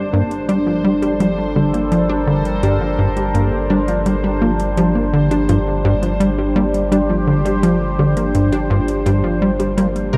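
A straight 4/4 pulse at 84 BPM drives this mysterious, cosmic slice of ambient, sequencer-driven space music in G minor, cut from a longer piece and resting on a single Gm7 chord. The tight sequencer bass, the loudest part, enters at 0.1 seconds with a punchy, saturated sawtooth-and-square riff between G2 and Bb3, its fast-attack filter pluck decaying into analog delay. Beneath it a deep, round sine sub bass holds G1, while a lush, detuned unison pluck spins arpeggios from F3 to Bb4 through analog delay and shimmer reverb. Up front, a sweeping resonant pad of wave-folded sawtooth and triangle sustains chords from G3 to C5, slowly swelling through chorus, phaser and shimmer reverb, and a quiet, bubbling texture of random filter steps hovers on C5. Electronic hi-hat and bongos with metallic hats arrive at 0.3 seconds, low in the mix and echoed by analog delay, all set in a wet, huge ambient reverb with an 8.4-second tail and a dark, warm production.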